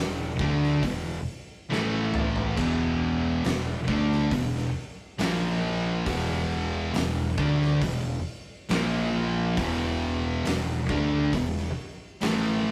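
Three thick fuzz guitars and a bright, growly fingered electric bass open this sludgy, brooding stoner and doom metal excerpt, grinding out a riff at a crawling 68 BPM in straight 4/4. The guitars sit in the background of the mix, one warm, one dark, and one bright and double-tracked. The bass is direct and overdriven and carries the low end beneath them. An oversized low-tuned drum kit comes in at 0.4 seconds with a punchy kick, fat snare, toms, hi-hat and dark crash cymbals, its saturated, gritty sound filling a pumping stone room, and a drum fill arrives at 1.7 seconds. The riff moves between E5, A5 and A#5 power chords, repeatedly returning to E5. A rough rehearsal-room sound with tube saturation and a moderate studio reverb gives the whole track a heavy, murky weight.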